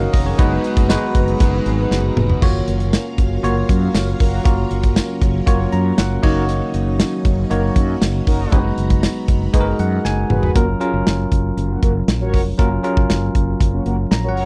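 A dry, close, 1970s-style studio sound frames this glossy, romantic 1980s-style pop excerpt in F# major at 118 BPM, where a bright, bell-like tine electric piano with a fill around 5.5 seconds rides over a fretless electric bass, an up-front drum kit with punchy kick and tambourine, round chorused synth brass stabs, a lush phased string machine that stops at 10.5 seconds, and a crunchy overdriven guitar heard only in the opening 2.9 seconds.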